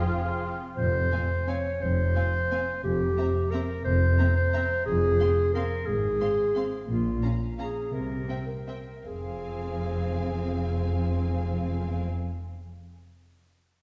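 Dark and sweeping, this rubato orchestral ballroom waltz in F minor sways in 3/4 at 152-191 BPM, opening with a brief chord of mellow, hollow flutes, warm oboe, clear bassoon, dark French horns and bright trumpet stabs while an up-front, clear clarinet carries a second line beneath a lush, vibrato-laden violin melody and a supporting violin line, over rich violas and a bowed bass of soft-attack cellos and focused double basses entering at 0.8 s, all bathed in a wet scoring-stage reverb heard from further back, with a slowing from 6.4 s to 9.1 s through Bbm and C7 before settling on F minor.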